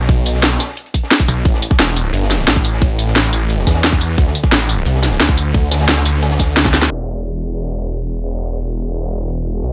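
A snarling, growling saw bass sits up front from the start, its detuned unison tone pushed through distortion and tube saturation, driving this dark, aggressive technical drum and bass cut at 176 BPM. An overdriven drum and bass kit with a cracking snare, bright hats and tambourine hammers alongside a tight, tape-tinged electronic kick, while a gritty breakbeat kit with a high-tuned snare and rolled-off top crunches in the background through the drop. A drum fill at 6.7 seconds and a band accent lead into a filter sweep from 6.9 seconds, by which point the kick and breakbeat kit have dropped out, and the bass and main kit carry on in a dry, mechanical mix.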